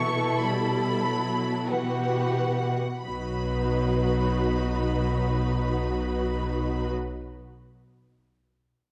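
A rich violin section carries the elegiac melody with light vibrato, above a dark second violin line with portamento and soft attacks, a clear viola accompaniment and a focused, close cello section holding a low B. This solemn, slow romantic orchestral passage moves in free time, slowing through its opening 3.1 seconds on an E minor chord over B before settling onto B, where a smooth double bass section enters up front. The production is dark, with moderate scoring-stage reverb, and the passage is cut from a longer piece.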